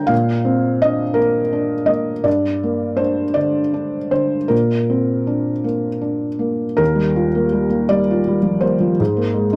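Neoclassical minimalist piano in a peaceful, tender mood, this short passage is cut from a longer piece and moves in an unhurried 6/8 at roughly 52-56 BPM, felt in dotted quarters with a rubato, breathing pulse. A felt-muted upright piano plays alone throughout, its soft, mellow tone sitting up front and intimate, with audible action noise adding a vintage character. The key is Eb major, and the harmony drifts gently from Bbadd9 to Gm and back before the opening section gives way at 6.8 seconds to a second section built on Ebadd9 and then Abadd9. The piano spans a range from Eb2 to Bb5, letting low bass notes and higher tones share the same smooth, warm touch. The sound is dry and close, like a 1970s studio recording, with only a light reverb around the instrument.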